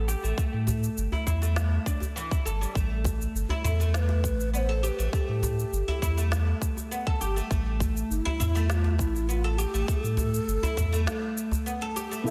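Hypnotic and warm, this organic downtempo excerpt moves at 101 BPM in a straight 4/4 over A5 and Gsus2 chords. A bright, woody oud plays arpeggios through a low-pass filter and digital delay, with a round sine sub bass pumping beneath, a tight up-front electronic kick, a woody-snared electronic kit with shaker and toms, and a cracking djembe with metal rattles. A breathy, hollow bass bansuri carries the melody from 3.7 seconds, and in the break from 11.1 seconds a dark, detuned chord stab with chorus and phaser lands at 12.2 seconds, followed at 12.3 seconds by a veiled, muted string section, all in a dense, heavily limited master with light small-room reverb.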